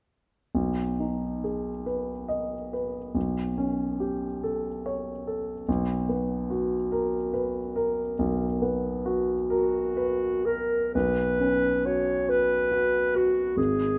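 In an unhurried, rubato 6/8 pulse of 40-49 BPM counted in dotted quarters, this luminous, pastoral impressionist duo in B major opens at 0.5 seconds with a polished, present baby grand piano spreading B6, A9/B and B5 harmonies from the deep bass up into the middle register. At 9.5 seconds a distant, roomy clarinet enters up front with a short classical-style melody in its lower-middle range, and the music settles onto a Bsus2 chord at 10.9 seconds. Close, detailed microphones and a moderate scoring-stage reverb give the fragment, cut from a longer piece, a soft glow.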